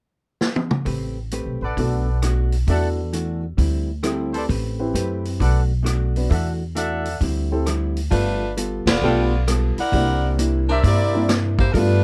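Energetic, joyful big band swing cut from a longer piece opens with a short fill on a gritty, saturated vintage drum kit before a woody pizzicato upright bass and a dark, clean hollow-body jazz guitar settle in at 0.9 seconds, with a lightly vibrato trumpet section adding stabs and an intimate upright piano, its action noise audible, accompanying through sus and ninth chords, until a clear, tight saxophone section takes the melody at 8.1 seconds and the band hits an accent at 8.8 seconds, all captured close and dry.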